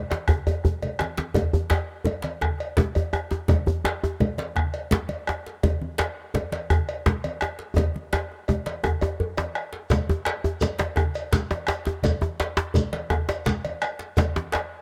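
West African traditional drumming in an earthy, driving 12/8, cut from a longer piece, where a round, saturated bombo sits up front beside two tight, cracking djembes (one carrying metal rattles), bright low-tuned congas struck with hard hands and a metallic cowbell, with drum fills at 0.5 and 7.8 seconds before a grainy, mellow shekere joins at 9.9 seconds, all captured by close, detailed microphones with light reverb.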